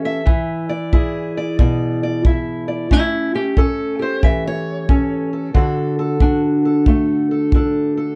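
A fingerpicked steel-string acoustic guitar leads this short excerpt of laid-back, soulful acoustic country blues, its dark, boxy parlour tone sitting up front and carrying the melody from B2 to E5. A tight acoustic kick drum, played with brushes in a small room, also sits up front and joins at 0.3 seconds, keeping a relaxed 91 BPM pulse in 4/4 with a swung eighth-note feel. The harmony moves through E7, A7 and D in A mixolydian. From 2.9 seconds the guitar takes a solo that runs to the close at 8.2 seconds. Light reverb and a dark, warm production give the cut an intimate, unhurried character.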